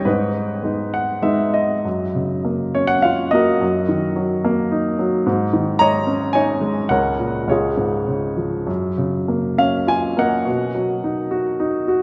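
Hopeful and warm, this short passage of lyrical classical solo piano moves in a rubato 3/4 at roughly 97-112 BPM in F# major, taken from a longer piece. The grand piano, polished and up front across a range from C#2 to A#5, opens on G#m and plays a brief fill from 0.6 to 1.9 s. A new passage then settles onto F#maj7 and drifts through G#sus4 and C# before closing on Bmaj7, all within a wet church reverb with a long 3.3-second tail.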